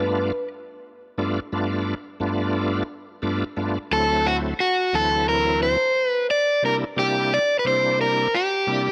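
An up-front, overdriven and compressed electric guitar carries a picked, soulful blues melody while a bright, shouting tonewheel organ with key click, chorus vibrato and a slow rotary speaker fills out the accompaniment over G9, D9 and C9 chords, giving this short, lightly reverberant cut from a longer piece a rollicking, straight feel.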